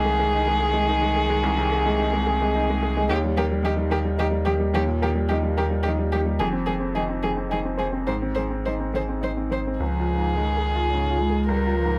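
Neoclassical piano and strings in Ab major, this intimate, hopeful fragment of a longer piece moves at 108 BPM in a rubato 3/4. A single violin carries the melody up front with a soft attack, light vibrato and an airy sul tasto tone, while a lone cello plays a pure, floating second line in the background, also bowed sul tasto. A bright upright piano provides the accompaniment from a worn, woody, slightly detuned instrument that sits present and up front. Beneath them, a deep sub bass with a punchy, pitch-drop attack and a mellow sine tone sustains the low end. The harmony passes from Ab/C through Eb, Fm7 and Ab before shifting to Db at 9.8 seconds as a new section begins, all set in a light reverb.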